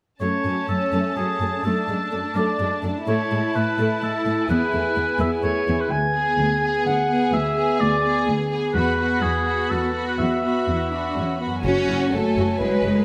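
A heroic adventure film score in F# minor at 126 BPM in 3/4, this determined, swashbuckling excerpt sets a smooth, vibrato-laden high violin melody over a distant, lush second violin line and an up-front oboe with a soft attack, while dark, woody violas sit in the background, mellow French horns hold sustained chords, and rich, close cellos carry the bass, until a ringing harp's arpeggios and a bowed double bass section join at 11.5 and 11.6 seconds as the F#madd9 chord returns, all captured with close, detailed microphones and light reverb.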